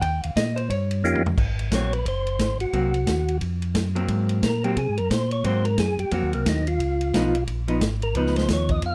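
A dark, clean hollow-body guitar opens this swinging, greasy soul jazz organ trio with a brief solo over an Eb9 chord, backed by a mellow, round tonewheel organ bass line and a vintage drum kit. The tempo is a brisk 177 BPM in 4/4 with a light swing on the eighths, set in Ab mixolydian. The drums sound acoustic and natural, with a punchy kick, a medium-tuned snare and a rolled-off top, and they play a quick fill just before a second, percussive tonewheel organ takes over the melody at 1.4 seconds. That lead organ is lightly overdriven with third-harmonic percussion, chorus vibrato and a fast rotary speaker, while the bass organ runs through a slow rotary. The organ solo moves from Ab9 to Db9 at 6.8 seconds, recorded close and dry so the organs and drums sit up front in detail.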